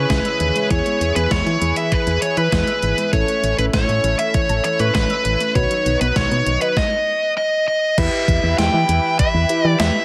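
Melancholic and nocturnal, this synth-pop excerpt at 99 BPM in 4/4 puts an overdriven, nasal lead guitar with a parked wah and digital delay up front on the melody, over a punchy, round FM bass, a gated 80s digital drum machine with a thumpy kick and gated-reverb snare, a thick, bright unison pad holding sustained chords, a dreamy FM electric piano with a soft pad layer in the background, and a warbly, dusty lo-fi pluck playing arpeggios until 6.7 s, as the chords move from C#m through E, A and B before turning to Em at 8.0 s.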